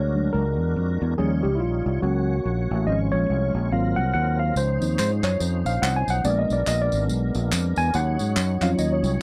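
Reverent and uplifting, this excerpt of uptempo gospel at 142 BPM in Db major swings its eighths as a worn, slightly out-of-tune tine electric piano takes the solo over lightly overdriven tonewheel organ chords turning through a slow rotary speaker with chorus vibrato, a round, punchy fingered electric bass sitting up front, and tambourine with group handclaps joining at 4.6 seconds, all captured in a dry, close 1970s-style studio sound with light reverb as the harmony moves from Bb7alt through Ab13 to Dbmaj9 and on to Ebm9.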